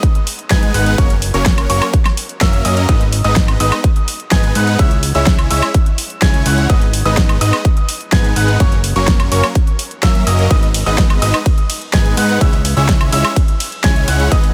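A dry mix with little reverb frames this short cut from a longer festival progressive house track, pushing forward at 126 BPM in a straight 4/4 and G# minor with a powerful, emotional mood. A punchy, layered electronic kick sits up front from the first beat, alongside an overdriven big-room kit whose huge snare, hi-hat, ride cymbal and woodblock give the groove its weight. From 0.5 seconds a lush, airy supersaw riff spreads bright, detuned sawtooth chords with a noise layer, pumping against the kick and trailing delay. Underneath, a fat, saturated analog bass combines sawtooth, square and sine tones with a wave-folded edge and a plucky filter, also ducking in time with the sidechain. High above, a dark, mellow baby grand piano traces delayed arpeggios with long sustain, as the harmony cycles through G#m, F#, G#m and C#m.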